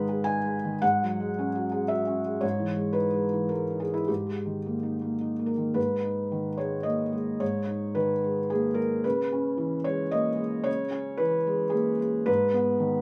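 A light reverb surrounds a soft, intimate felt-muted upright piano that sits up front, its mellow tone carrying a vintage character. This short excerpt of neoclassical minimalist piano is reflective and melancholic, moving in a rubato three-beat metre, with the instrument tuned slightly below standard pitch at A4 = 435 Hz. The solo piano plays throughout, spanning G#2 to G#5. Its harmony opens on G#m and passes over a G# bass through F#sus2, C#madd9 and D# chords. At 5.8 seconds a second section begins, shifting to C#m7 at 9.0 seconds before settling back on G#m near the close.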